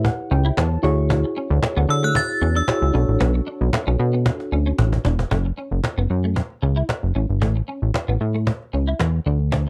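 Early-eighties boogie funk at 114 BPM with a slick, funky mood, where a punchy, plucky analog bass and woody, hard-hand cajon sit up front in a dry, close 1970s-style studio sound. A dark, tremolo-laden FM electric piano opens with a fill and comps until 5.0 s, a clean semi-hollow guitar riff shimmers with ensemble chorus, a bright, inharmonic FM bell rings out a brief melody from 1.9 to 2.9 s, and a cajon fill leads into a new section at 5.3 s over chords moving from A9 through Dmaj9#11 and Bm9 to F#m and A7.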